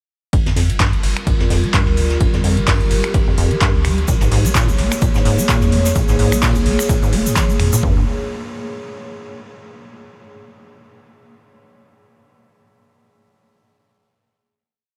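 A squelchy, resonant square-wave acid bass drives this short, raw acid house piece, its accented eight-step line with slides running through a filter sweep, tube saturation, delay and sidechain pumping from 0.3 to 7.8 seconds. At 128 BPM in 4/4 with a light 16th-note swing in G phrygian, a punchy analog drum machine lays down a four-on-the-floor kick with floor toms. A second, booming drum machine supplies metallic hats, finger snaps and handclaps on a programmed backbeat. A round, deep bass plays a syncopated riff in the background, while a vintage brush kit adds a looped, edited breakbeat of snare, hi-hat and ride with dark cymbals and a rolled-off top. A moody, detuned analog pad holds sustained chords through chorus, phaser and pumping, moving from Gm7 to Bbm7 at 4.1 seconds, where a grainy, distant egg shaker joins with hand-played sixteenths. The groove gives way at 7.8 seconds to a final Gm7 chord, all set in a light reverb.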